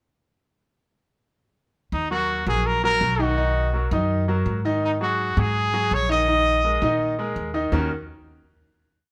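A fiery, danceable salsa groove in straight 4/4 drives this short piece, anchored by a woody, thumpy upright bass playing a pizzicato tumbao that anticipates the chords, while a brilliant concert grand lays down a montuno in octaves from 2.1 seconds. Above them a clear trumpet with light vibrato sings a motif-based, song-like melody in a pop style, sounding roomy and slightly distant despite sitting up front. The moody minor progression settles on a final chord at 7.7 seconds, all held in a moderate large-studio reverb.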